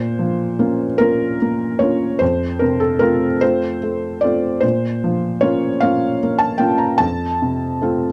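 Peaceful and quietly hopeful, this short fragment of a longer neoclassical minimalist piano piece unfolds in a gentle, rubato 6/8. A felt-muted upright piano plays alone throughout the full 8.1 seconds, its tone soft and mellow, spanning from F2 up to Bb5. The harmony rocks between Bb minor and F, returning to Bb minor at 4.6 seconds before settling again on F. The recording is dry and close in a 1970s studio manner, placing the instrument up front with an intimate, natural presence. Audible action noise from the piano's mechanism adds a tactile, human quality to the sound.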